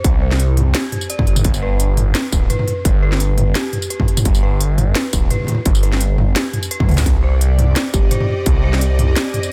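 Half-time drum and bass at 171 BPM in C harmonic minor, this tense, spacious excerpt opens with an eerie, inharmonic synth bell tracing arpeggios through chorus, phaser, delay and gritty 12-bit sampler character, over a swirling, thick detuned saw bass and a distorted, up-front electronic kick. A layered kit with a cracking snare, crisp hats, tambourine and toms drives the groove, with a drum fill at 6.8 seconds. At 7.1 seconds a bowed string section enters with sustained chords that pump against the sidechain, and a woody kalimba rings briefly with delay in the background before the dense, heavily limited mix ends.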